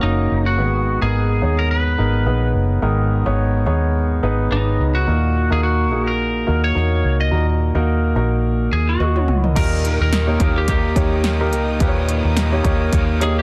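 Piano-driven pop with a dramatic, earnest mood and a gentle swing, where a clear, polished grand piano and a round, foam-muted electric bass sit up front beneath a bright, twangy lead guitar carrying the melody. A punchy, layered electronic drum kit with crisp hats and overdrive enters with a fill at 9.0 seconds, and at 9.6 seconds the music lifts into a new section as a hollow-body overdriven guitar riff and a lush, bowed string section in the background join in. Light digital reverb and a dense, heavily limited modern master give this short cut from a longer piece a compact, polished finish.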